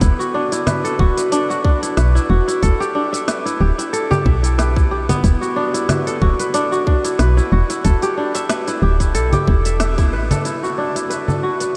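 From the first moment, a fingerpicked kora plays ringing, crisp arpeggios up front, its acoustic tone softened by a low-pass filter and trailed by diffuse ambient delay and shimmer reverb. Alongside it, a round, mellow FM bass with a woody, fast-attack, decaying tone pumps against a tight electronic kick. Meanwhile, an organic electronic kit adds congas, shaker, smooth hi-hats and a woody snare in small room ambience over a lightly swung 16th-note feel. The whole dreamy mix is soaked in a huge ambient reverb, giving this organic downtempo fragment, cut from a longer piece, a hypnotic, mystical air. After a band accent at 9.8 seconds, the kick and bass drop away by 10.3 seconds, leaving the kora and the kit to ring on briefly, the kit stopping at 11.7 seconds and the kora at 11.8 seconds.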